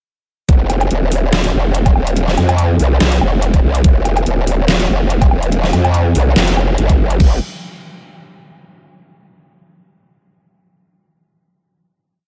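Heavy wobble dubstep with an aggressive, half-time swagger, built as a single drop from 0.5 seconds to 7.2 seconds before a final note rings out to the end. A growling, saturated bass wobbles up front through a formant filter with chorus and overdrive, its modulated phrases shifting in wobble speed while an overdriven, knocking electronic kick punches alongside. The layered drum kit adds a deep snare, metallic hats, low woodblock and crash, all carrying a small-room character under light reverb and a touch of lossy grit.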